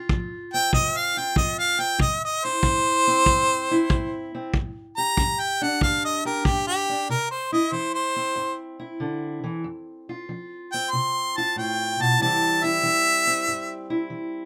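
Rollicking yet laid-back, this short excerpt of acoustic country blues moves at 94 BPM in 4/4 with a swung eighth-note feel, centred in C major. A bright, close-miked harmonica carries the melody up front, its soft attack, light vibrato and scooped notes giving the jazz-tinged line a relaxed lilt, and it takes a solo over the first 7.1 seconds. Beneath it, a fingerpicked steel-string acoustic guitar with a dark, boxy, parlour-style tone supplies the accompaniment in a lower register, sitting well back in the mix. A punchy kick drum, played with brushes and recorded in a small room with a rolled-off top, stands up front until it drops out at 6.7 seconds. The harmony moves among C, F and G chords across two sections, with the second section arriving at 7.1 seconds, all set in a light reverb.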